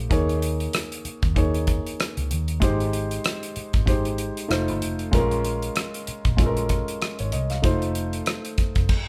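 Lush 1970s-style soul in Bb dorian at 96 BPM with a gentle sixteenth-note swing, this smooth, bittersweet excerpt sets an intimate, up-front grand piano with audible action noise over a dark, round, foam-muted fingered electric bass and a dry, damped drum kit with a tight kick, hi-hat, rim click and crash, all captured as a band playing live in one room with light reverb while the chords move from Eb7sus4 through Abmaj7 and F7 to Bbm7 before returning to F7.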